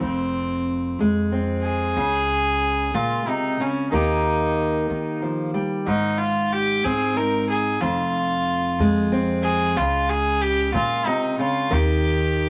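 A steady 6/8 pulse at 62 beats per minute, counted in dotted quarters, carries this gentle, nostalgic folk fragment cut from a longer piece, as it cycles through Fm, Db5, Eb and Ab. A single bowed fiddle with a nasal, reedy gut-string tone sings the melody up front, alongside a bright fingerpicked steel-string acoustic guitar whose fresh strings give off audible finger squeak. Beneath them a woody, thumpy pizzicato upright bass anchors the harmony, all set in a moderate studio reverb with a touch of tape saturation.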